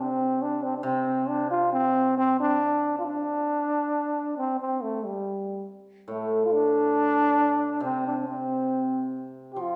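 This Chinese traditional piece, cut from a longer work, has a pastoral, graceful mood and moves at an unhurried 69 BPM in a straight 2/4. A breathy trombone carries the melody up front as an intimate, jazz-styled solo, its soft attacks, scooped notes, light vibrato and smooth, whispered top giving the line a tender voice. Beneath it, a hammered dulcimer provides accompaniment lower in the mix, its acoustic strings ringing and shimmering with a warm glow. Both instruments play throughout, and the music turns to a new section at 2.6 seconds. A wet recital-hall reverb, like that of a church or concert hall, surrounds the pair with a lingering sense of space.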